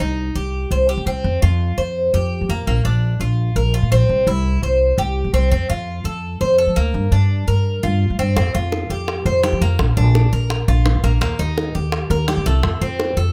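A bright, metallic Cuban tres picks arpeggios over a woody, thumpy pizzicato upright bass in this sunny excerpt of Cuban son and guajira at 169 BPM, moving through chords such as Cm, Fsus2, Bb and Gm7 in a rough home demo mix with light reverb, before tight, high-tuned bongos struck with hard hands enter at 8.4 seconds.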